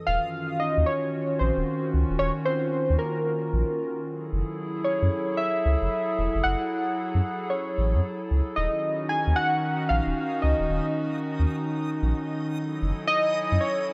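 IDM at 113 BPM in 4/4, this intricate, melancholic piece swings its sixteenths at 62% and moves between Ebm9 and Gbm9 chords. A warbly, tape-like pad sustains dark, nostalgic chords with a slow attack and long release, its detuned, wave-folded tone thickened by chorus and its own reverb. Up front, warbly lo-fi synth keys carry the melody with a mellow, decaying tone, roughened by 12-bit sampler grit and trailed by tape echo and chorus. Beneath them, a round, deep sub bass holds the low end, given body by tube saturation. Around 9.8 s a reversed, granular texture returns in the background, bright and dreamy, before this excerpt from a longer piece closes at 13.9 s under a light reverb.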